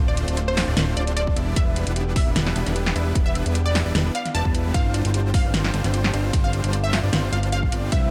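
A swung sixteenth-note groove in 4/4 with a half-time feel drives this lush, bittersweet future bass excerpt. A pop drum kit with a fat snare, metallic hi-hats and ride cymbal enters at 0.2 seconds, and a punchy electronic kick joins at 1.3 seconds, both up front in a small room ambience. Underneath, a thick analog bass blends sawtooth, square and sine waves, wave-folded and saturated, with a filter sweep and sustained notes. Huge, airy supersaw chords carry the riff with detuned unison and a noise layer, moving from Dm7 to Em7 and settling on G7sus4 at 4.7 seconds. A full-bodied detuned unison pluck plays the melody in a high register, its decaying filter pluck trailing into dub echo, while a fingerpicked concert harp rings in the background with echoed arpeggios. Sidechain pumping breathes through the harp, chords, bass and pluck, and a digital ambience surrounds the mix.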